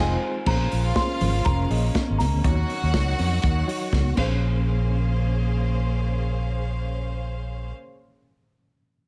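Disco at 121 BPM in Bb minor, danceable and sultry, this short cut opens on a band accent before a muffled, lo-fi soul drum kit with dark cymbals and congas played with soft hands join at 0.5 seconds, with a drum fill running from 3.9 to 4.4 seconds. A round, up-front fingered bass anchors Bbm9 and Ebm7 chords beneath a reedy, slightly out-of-tune electric piano with fast tremolo, while a smooth violin section carries a second line over lush, distant symphonic strings. A delicate, bell-like celesta with tape echo sings the melody only until 3.9 seconds, and the electric piano continues alone after the other parts stop at 7.7 seconds, all within a small room ambience.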